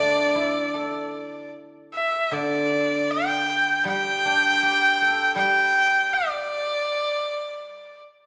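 A moderate scoring-stage reverb with a 1.9-second tail surrounds this short passage of Chinese traditional music, cut from a longer piece, giving it a festive yet graceful air. A single bowed erhu carries the melody up front and close, its clear, earthy voice ranging from D5 to G5 with light vibrato, portamento and an airy bow. Beneath it, a mellow guzheng played with fingerpicks supplies accompaniment between D3 and A4, its silvery notes ringing at a softer level than the erhu. The tempo sits around 79 BPM in 4/4, but the feel is rubato, so the pulse breathes freely. A new section begins at 2.3 seconds, and the guzheng falls away at 7.6 seconds, just before the erhu finishes at 8.0 seconds.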